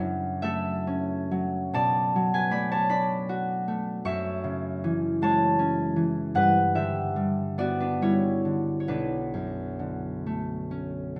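A solo concert harp opens the excerpt, fingerpicked and up front, its ringing tone reaching from B1 to C#6 in a gentle, mysterious classical piece that moves freely with rubato in 6/8. Harmonies drift through F#m7, Bm7, F#m9 and Gmaj7 before settling on Bm9 near 8.9 seconds. The warm instrument sits in a moderate recital hall reverb that lets each note hang in the air.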